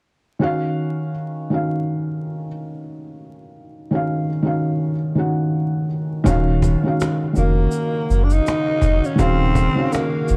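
Hazy and melancholic, this lo-fi hip hop excerpt sits at 82 BPM in Eb dorian with a swung 16th feel, opening at 0.4 seconds on an Ebm9 chord from a soft, felt-muted upright piano that sounds mellow and intimate, with short sustain and cassette tape coloring. At 6.3 seconds a deep, thick saturated sub bass arrives up front alongside a smooth, detuned analog pad with chorus, a woody cajon with faint snares and a grainy, bright tube shaker, the last three kept in the background. From 7.4 seconds a breathy, raspy tenor saxophone takes the jazz-style solo melody with vibrato, scooped notes and a growling subtone, bathed in plate reverb, all within a dark production dusted with vinyl crackle.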